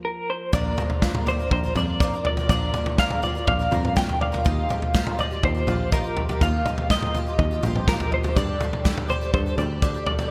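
A bright, 1980s-style digital production with light studio reverb frames this hopeful, anthemic indie folk excerpt, which opens on a brief stop where a dark, fingerpicked steel-string acoustic guitar with analog chorus sits in the background, playing only until 1.5 seconds. From 0.5 seconds, a punchy, up-front country drum kit with gated reverb, a round, foam-muted picked electric bass, a shimmering, octave-doubled twelve-string acoustic guitar with ensemble chorus, and light tenor ukulele arpeggios build the arrangement over chords moving from Fsus4 to Bb, Ebadd9 and Gsus2. Carrying the melody throughout is a slightly broken-up, lo-fi electric guitar through a small old amp, colored by tremolo and delay.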